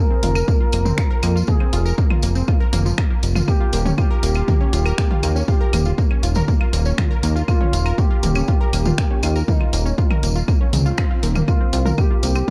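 A smooth, expressive portamento lead opens this melancholic, dramatic melodic techno excerpt, its sustained sawtooth voice carrying vibrato, lush chorus and tape echo over a detuned unison pluck that spins arpeggios through sidechain pumping and digital delay. The bass and drum kit arrive at 0.2 seconds: a punchy, funky analog bass with a fast-attack filter pluck sits up front, while the layered kit sprinkles claves, finger snaps, hi-hat and toms, each pumping against the sidechain. A heavy electronic kick joins at 0.5 seconds, also placed up front and re-recorded in a large room like the kit. A jingly, bright acoustic tambourine with a vintage, band-limited character adds shimmer at a low level. Near the end, a very quiet electronic swell appears between 10.7 and 11.5 seconds. The production is dark, with little reverb, and the harmony moves from F5 to Eb and then to C5.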